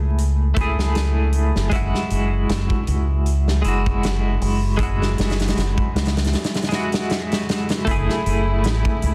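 Heard through small-room ambience, vinyl crackle and a dense, heavily limited master, this melancholic, smoky trip hop excerpt at 78 BPM with a light 16th-note swing sets a bright, twangy twelve-string electric guitar with tremolo and tape echo over a round, punchy dub bass on F#m7 and Eadd9/F#, joined at 0.2 s by a big, natural-sounding rock drum kit with a tight kick and medium-tuned snare, before a clear chamber violin section with light vibrato enters on sustained chords at 7.9 s.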